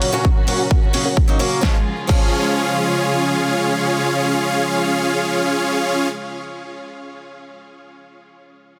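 Detuned supersaw chords lead this anthemic, euphoric festival progressive house excerpt at 130 BPM in Db major, their lush, bright sawtooth riff sitting up front with a sub octave, a low-pass filter, digital delay and sidechain pumping. Beneath them, a rich studio string section holds smooth, bowed sustained chords with vibrato, also pumping against the beat, while a picked swing-style acoustic guitar with fresh strings and a boxy tone adds accompaniment in the background through digital delay. A big-room dance drum kit brings a huge snare, hi-hat and crash cymbal, and a punchy, layered electronic kick enters at 0.2 seconds, with both drum parts stopping at 2.2 seconds. The harmony moves from Gb to Db at 1.6 seconds, after which the strings and supersaws carry on to 6.1 seconds and the guitar rings out alone until 6.7 seconds. Light reverb surrounds a dense, heavily limited modern master.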